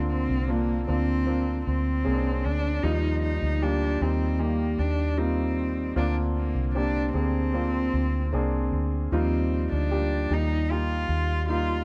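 The recording has a dark, warm sound with a light room reverb, and all three parts sit up front. This short section of a longer pop ballad moves at 76 BPM in a straight 4/4 in E-flat major, with a hopeful, tender mood. A single bowed cello carries the melody between Bb3 and F4, played sul tasto with a soft attack and light vibrato, giving it a warm, intimate, close presence under a plate reverb. A clear, open baby grand piano accompanies from 0.0 to 11.8 s with long sustain, also treated with plate reverb. Beneath them, a vintage muted electric bass, fingered and foam-muted, gives an amped, round low end between C2 and Eb2. The harmony moves between Bbadd9 and Ebadd9, returning to Bbadd9 at 6.0 s.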